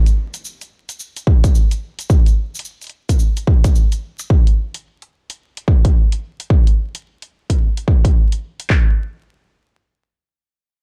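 A swung sixteenth-note groove in 4/4 drives this short glitch hop excerpt, giving it a funky, gritty strut. An electronic hi-hat runs from 0.1 s to about 8.7 s, layered and re-recorded in a large room, while a grainy, bright acoustic cabasa adds small-room texture until 4.3 s. At 1.3 s a dubstep drum kit arrives up front, with handclaps and a punchy kick giving the beat its weight through to 8.9 s. The production is dark and warm, with little reverb overall and a layer of vinyl crackle underneath. A brief new section begins at 8.7 s, just as the hi-hat drops away.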